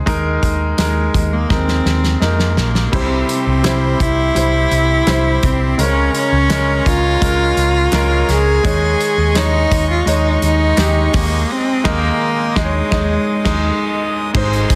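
A clear, polished grand piano with deep bass opens this hopeful, piano-driven pop passage, cut from a longer piece, at a steady 84 BPM in 4/4 with a straight feel. Almost at once a dark, round hollow-body electric bass sits up front with picked notes, alongside a loose indie drum kit with a fat snare, punchy kick, hi-hat and crash cymbals in a small room. A rich, smooth bowed cello takes the melody from 0.8 seconds, close and even with vibrato, while a drum fill leads into a new section at 2.9 seconds. There a reedy accordion adds sustained chords, and very quiet, crisp group handclaps join soon after. The harmony moves from Ebsus4 through C and Bbm7/Db to Eb7sus4, and the band hits an accent near the close, all under light studio reverb and a dense, heavily limited modern master.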